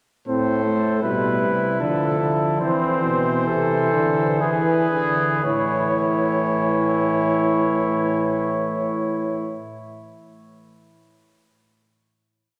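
An up-front trumpet carries the melody in this short, complete classical canzona for brass quartet. Its solemn yet driving mood unfolds in 3/4 at 55 to 81 BPM in A minor, slowing down through the opening stretch. A distant flugelhorn sings the second line, a mellow trombone with light vibrato and a soft attack supplies the accompaniment, and a roomy bass trombone anchors the bass. All four enter together at 0.3 seconds, each voice taking one strand of imitative counterpoint. The harmony moves from A minor through D minor and back, reaches E, then settles on A at 5.4 seconds into a held final chord, with the instruments stopping at 9.6 seconds. A wet church reverb with a long tail bathes the ensemble in a glowing, spacious resonance.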